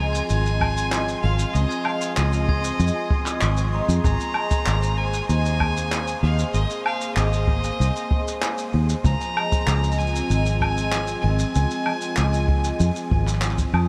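A straight 4/4 groove at 96 BPM comes from a dark, smooth brush kit of handclaps, hi-hat, shaker and woodblock, a punchy kick and a round, foam-muted electric bass sitting up front, carrying this delicate, hopeful folktronica fragment through Dbmaj7 and Abadd9 chords. A fingerpicked concert harp rings out arpeggios with tape echo under a warbling, nostalgic lo-fi pad, while a bell-like glockenspiel with soft plastic mallets adds a second line in the background and a flickering, grainy granular texture glimmers high above. A clear, biting violin with light vibrato carries the melody until 13.4 s, its tape echo blending into a dreamy mix soaked in a huge ambient reverb.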